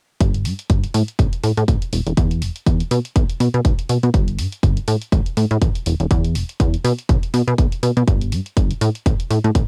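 A swung 16th-note groove at 122 BPM in 4/4 drives this bittersweet, soulful piano house cut in E minor, where a punchy, layered electronic kick drum with tape-warm character sits up front beside a plucky, resonant analog bass that pumps with sidechain compression, while a quieter electronic hi-hat carries a cassette-tape character, all captured as a dry, small-room home recording running from 0.2 to 9.7 seconds.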